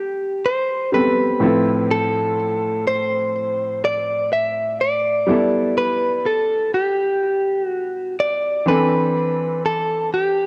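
A clean, direct-recorded electric guitar carries a picked, compressed melody over clear, natural baby grand piano chords from the very start of this brief cut from a longer piece, both sitting up front with a cassette-tape tint. It's a tender, romantic R&B piece at 62 BPM in G major and a straight 4/4, with the piano's short-sustain voicings moving from Am9 through Fmaj7/A and G69 to C69 at 8.7 seconds. Light reverb and small-room ambience give the whole a homemade, intimate feel.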